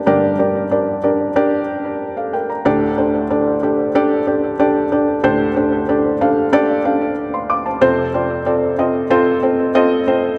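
Pop in an uplifting, anthemic mood, carried by a solo felt-muted upright piano that sits up front with a soft, intimate, mellow tone and tape echo across its range from D2 to D6. The chords move from G minor to a suspended D at 2.7 seconds and settle on F at 7.8 seconds, all bathed in a lush concert-hall reverb. It is cut from a longer piece.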